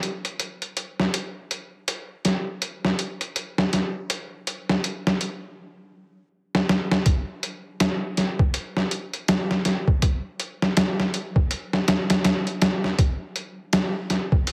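Brooding and hypnotic, this trip hop excerpt at 81 BPM in 4/4 with a 60% sixteenth-note swing features only a sampler-style drum kit of hi-hat, thumpy kick and medium-tuned snare, pitched down, muffled and overdriven, sitting up front with a small-room re-recorded character, given a moderate plate reverb and a heavily compressed radio sound, with a drum fill at 6.5 seconds leading into a new section at 7.1 seconds.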